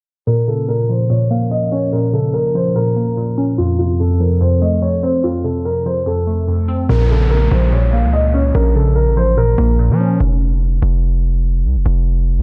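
This cold, menacing hip hop excerpt moves at 145 BPM in a half-time 4/4 feel, set in Bb harmonic minor and cycling between Bbm and F chords. A dark, intimate concert grand piano carries the melody up front, its boxy tone and audible action noise softened by a low-pass filter and trailed by delay. Beneath it, a glassy, crystalline wavetable pluck with a detuned, ring-modulated edge and chorus plays the accompaniment, while a moody analog pad with a slow attack and long release holds sustained chords through the opening filter sweep. At 6.9 s a punchy, heavy 808-style bass drops in with an electronic downlifter, as the harmony returns to Bbm before landing on an F5 chord. From 10.2 s the piano and pluck fall away, leaving the bass alone for a stark break in a dry, close mix.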